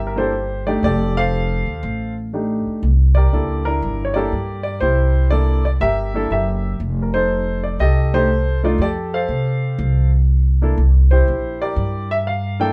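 Jazz piano trio in a swinging, warm mood, this brief cut from a longer piece pairs a natural-toned grand piano carrying the melody with plate reverb against a woody, growly pizzicato upright bass, both up front and playing throughout over C13 and F13 changes that settle on C9, in a moderately reverberant studio heard from further back in the room.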